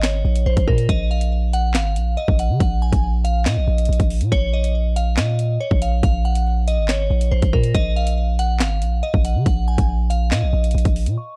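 A glassy FM synth bell, a deep 808-style bass and a drill drum kit all begin together, setting an ominous, cold drill groove at 140 BPM in 4/4 with a half-time feel, in Bb minor. The crystalline bell carries the melody between Bb4 and Db6, its fast attack decaying into a long release, coloured by chorus, phaser, a low-pass filter and digital delay, and it sits at a lower level than the other parts. Up front, the sine-based bass holds long, mellow notes from Ab1 to Db3 that strike quickly and then fade. The electronic kit pairs a hard-clipped kick and sharp snare with metallic hi-hats and handclaps, all roughened by vintage 12-bit sampler grit. The harmony rests on Bb minor, alternating with stretches where the chord drops out, inside a dark, digital ambience, and in this cut from a longer piece the bell rings on alone from 11.2 s to 11.4 s.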